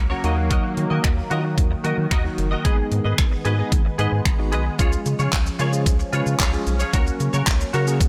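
A layered electronic pop drum kit sits up front in this confident, driving dance-pop excerpt, its knocking kick, hi-hat, shaker, finger snaps and handclaps overdriven and re-recorded in a small room. Beneath it, a round analog bass blends square, sine and triangle waves into a deep, wave-folded tone with a fast attack, pumping with the sidechain. A tine electric piano plays accompaniment through built-in speakers, while a direct-recorded clean electric guitar picks a bright, twangy, compressed riff treated with ensemble chorus. A sweeping, evolving resonant pad of detuned sawtooth and sine layers holds sustained chords with a slow attack and filter swell, treated with chorus and sidechain pumping. The chords move from Ebm to Abm, Db and Gb/Db in a straight four-beat feel, and the dry mix carries little reverb.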